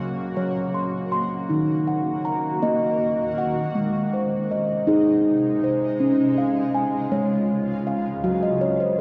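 Calm and dreamy, this short excerpt from a longer piece is meditative world music built around tuned percussion, moving slowly at 53 BPM in a straight 6/8. A steel tongue drum sits up front, playing arpeggios from Eb3 to C6 with a round, pure, ringing tone struck with soft rubber mallets. Beneath it, a granular cloud pad holds sustained chords between C3 and Gb4, its blurred, evolving texture carrying a slow attack, a long release and its own built-in reverb, set well back from the drum. The harmony moves from Gb through Ebm, Ab and Db before returning to Gb at 8.2 seconds, where the steel tongue drum plays a fill that runs to the end at 9.0 seconds. A wet echo-chamber reverb and small-room ambience give the production a dark, warm sound, with the tuning set slightly below standard at A4 = 438 Hz.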